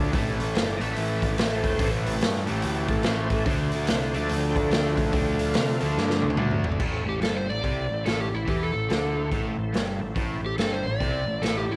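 Swung eighths in 4/4 drive this smoky, brooding blues rock and southern rock excerpt. A saturated, gritty garage drum kit with a punchy kick and rolled-off top sits up front, alongside a bright, double-tracked semi-hollow guitar riff and a growling, overdriven picked bass, while a thick tonewheel organ with chorus vibrato and slow rotary speaker holds sustained chords in the background. After a drum fill from 6.0 to 6.8 seconds, an overdriven slide guitar enters at 7.1 seconds with the melody, all in a small, pumping room with moderate spring reverb.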